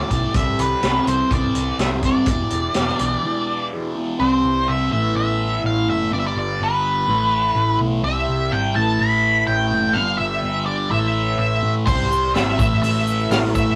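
A dark octave-fuzz lead guitar carries the melody up front in this trippy psychedelic rock excerpt in A minor at 125 BPM, over a double-tracked thick fuzz guitar riff with phaser, a round hollow-body picked bass, and reedy, breathing pedal harmonium chords in the background, while a vintage kit with a punchy kick and high-tuned snare drops out at 3.1 s and returns at 11.9 s alongside a grainy egg shaker, all in a rough rehearsal-room sound with tube saturation.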